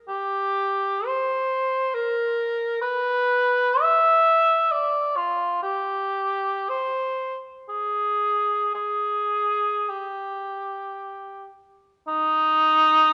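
A mellow cor anglais with light vibrato plays alone from 0.1 to 13.1 seconds in this mournful, meditative classical fragment cut from a longer piece, moving freely with rubato in 3/4 at 46-70 BPM between Eb4 and E5, its roomy tone carried by a moderate recital hall reverb with a soft, rolled-off top end.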